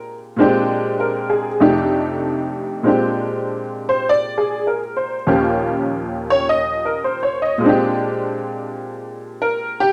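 A detuned, jangly honky-tonk upright piano carries this short solo jazz clip on its own, sitting up front with a vintage, short-sustained tone. The mood is warm and playful, moving at 101 BPM in 4/4 with a swung eighth-note feel and a loose, rubato phrasing. Set in Bb mixolydian and tuned slightly sharp to A4 = 441 Hz, the piano ranges from Eb2 up to Eb5 over a harmony of Bb13 and F13 chords. At 2.9 seconds a new section opens with a piano solo that wanders through Bb13 and Eb9 before settling back on Bb13 until the cut at 9.9 seconds. A moderate studio reverb gives the instrument a modest sense of room, and the passage is clearly lifted from a longer piece.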